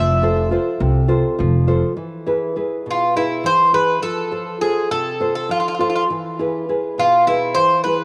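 A Greek bouzouki leads this cool, moody excerpt of Greek folk in a bouzouki-band style, its picked double strings ringing with a metallic edge and some octave-doubled courses, placed up front. Set in 7/8 at 204 BPM counted in eighths with a straight feel, the piece moves between F and E chords, shifting to new material at 2.0 s. A classical nylon-string guitar, also close in the mix, fingerpicks the accompaniment with an audible finger squeak and a warm acoustic tone. An upright bass plays pizzicato on gut strings for only the opening 1.8 s, woody and thumpy with a dark low end. A moderate plate reverb with a 2.7-second decay lends the ensemble a lingering space.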